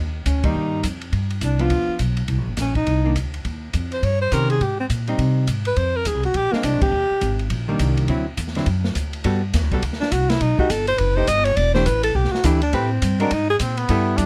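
A woody, thumpy upright bass opens this relaxed, swinging small-group jazz excerpt at 207 BPM in Eb major, joined almost at once by a clear alto saxophone with soft-attack vibrato, a dark-cymbaled acoustic drum kit with punchy kick, and a clean, picked hollow-body archtop guitar, with band accents punctuating the line. The tune shifts to G major at 9.2 seconds, the alto returns after a brief pause at 10 seconds, and a breathy, whispered trumpet slips in for a short second line at 13.6 seconds. The sound is close and detailed with little reverb.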